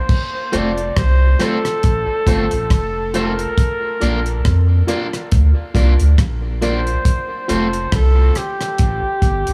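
A slow, loping 4/4 groove at 69 BPM, swung on the sixteenths, sets a hazy, laid-back dub reggae mood in F major, and this short cut is taken from a longer piece. A damped 70s drum kit sits up front with a dry, tight sound: dark cymbals, a crash, hi-hat, kick drum and rim click, joined from 0.5 seconds by a deep, round sub bass ranging from F1 to F2 that carries the low end with a soft, sustained tone. Over the drums, a flugelhorn carries the melody between G4 and D5, vintage and punchy with vibrato, its phrases trailing off into dub echo. An electric guitar at the edge of break-up adds twangy, picked accompaniment bathed in spring reverb and echo, while a dark, woody upright piano drops short stabs from the background, both playing until 7.7 seconds. The harmony moves from F to Bb and back to F, and a small room ambience wraps the whole mix.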